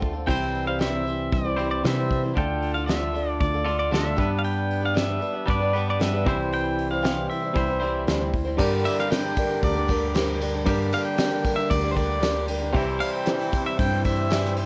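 Folk rock and heartland rock at 116 BPM in a wistful, reflective mood, this excerpt from a longer piece sets a compressed, slide-voiced pedal steel melody over a dark, boxy acoustic guitar in the background, a twangy electric guitar riff, a slightly out-of-tune tine electric piano on bass through a combo amp and an up-front brush kit with a fat snare, before a woody, slightly detuned upright piano, a lightly overdriven tonewheel organ with slow rotary and a jingly tambourine arrive very quietly at 8.6 s as the chords move from C, Dm and G to Gm, all under light reverb and the warbling pitch drift of worn cassette tape.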